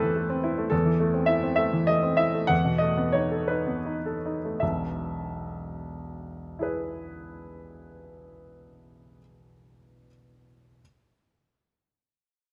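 A clear, natural-sounding baby grand piano plays alone, up front and with short sustain, in this passionate, lyrical romantic character piece in a lilting 6/8 with free rubato, easing back over its first 4.6 seconds as the harmony moves from a darkened minor color through a yearning dominant to a settled resolution at 4.6 seconds, its range reaching from deep bass notes to the upper middle register, all captured by close, detailed microphones with a light touch of reverb in a brief excerpt lifted from a longer work.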